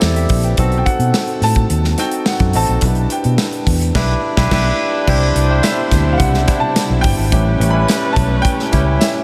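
A barky tine electric piano, lightly overdriven through a combo amp with a subtle chorus, sits up front in this polished 1980s jazz-funk pop excerpt at 107 BPM in a straight 4/4, with a glossy, urban mood. Beneath it, a dark, round, foam-muted fingered electric bass and an airy acoustic drum kit with bright cymbals, a medium-tuned snare and a punchy kick drive the groove, while a jingly, band-limited tambourine sits very quietly in the mix. From 0.8 seconds a clear, intimate grand piano carries the melody high in its register, its action noise audible, over harmony that moves from D9sus4 through B7b9 to Em7/B. The band hits an accent from 4.0 to 5.1 seconds, and at 5.1 seconds the harmony shifts to Cmaj7 and then A7 as a loose, jazz-style horn section with light vibrato and a lush, bowed string section fill in the background. A huge ambient reverb soaks the whole mix in a dreamy haze.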